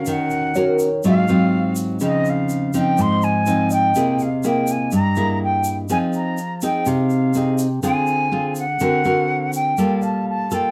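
A dark, warm production with a moderate studio reverb gives this short bossa nova cut from a longer piece a close, intimate sound. It moves at 124 BPM in a straight 4/4, with a wistful mood and a chord progression running from Ebm7 through Dbmaj9 and C7b13 to a closing Gm9. The nylon-string guitar sits up front, full-bodied and fingerpicked, with deep classical tone and audible finger squeaks as it carries the harmony. Above it, the concert flute sings the melody with an airy, distant quality, shaping tongued, expressive phrases with vibrato. A mellow tine electric piano, clean and heard through its built-in speakers, stays in the background, drops out at 5.9 seconds and returns at 10.0 seconds. A grainy, bright egg shaker, captured in a live room, adds light pulse beneath the ensemble.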